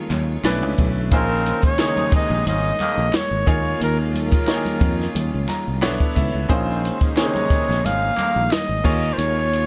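Lush 1970s-style soul with a silky, bittersweet mood and a gently swung groove, cut from a longer piece. A clear grand piano and a studio string section holding bowed, vibrato-rich chords open together, the strings smooth and even in the background, while a round, dark fingered electric bass and a compact cocktail drum kit sit up front, the kit giving a punchy kick, high-tuned snare, hi-hat and crash cymbal. Very quiet congas played with soft hands and a distant group handclap add ringing and crisp percussion touches. At 1.1 seconds a breathy, whispered flugelhorn takes the melody, intimate and close, joined by stabs from a muted trombone section with a nasal straight-mute tone. The piano steps out with a fill between 5.2 and 6.5 seconds over minor eleventh and suspended ninth chords, all set in a small room ambience.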